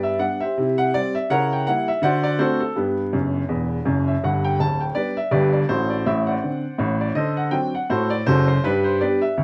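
Swinging and exuberant, this brief stride piano passage is cut from a longer jazz piece and moves at a brisk 164 BPM in 4/4, with a lilting swing on the eighth notes. A baby grand piano plays solo throughout, ranging from deep D1 bass notes up to A5, and its tone is warm and open with a long sustain, sitting up front in the mix. The harmony stays in G major, passing from G through C and a diminished chord to D7 before landing back on G. A piano fill from 3.1 to 4.2 seconds bridges the opening phrase into a second passage that leans on D7 before resolving to G near 8.6 seconds. A wet studio reverb and a layer of vinyl crackle give the recording an aged, roomy character.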